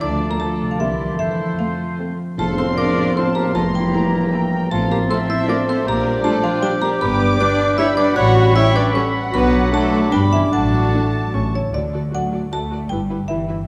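Mischievous and quirky, this whimsical cinematic cue skips along at 155 BPM in 3/4, opening in F major before turning to D major at 7.0 s. The melody pairs a dry, woody xylophone struck with wooden mallets and a veiled con sordino violin section with light vibrato, while a bright clarinet, an airy silver flute with a crisp attack and a clear oboe weave second lines alongside them until about 11.5 s. A mellow, distant bassoon and a very quiet muted viola section fill the accompaniment, a second muted violin section carries another line in the background, and a mellow French horn section holds soft sustained chords. A ringing concert harp plays fingerpicked arpeggios throughout, and the bass rests on dark, muted cello and lush double bass sections. At 2.4 s a band accent lands with a brief, close tam-tam, and the closing section arrives at 11.7 s. The production is dark and set in a wet scoring-stage reverb, and the passage is cut from a longer piece.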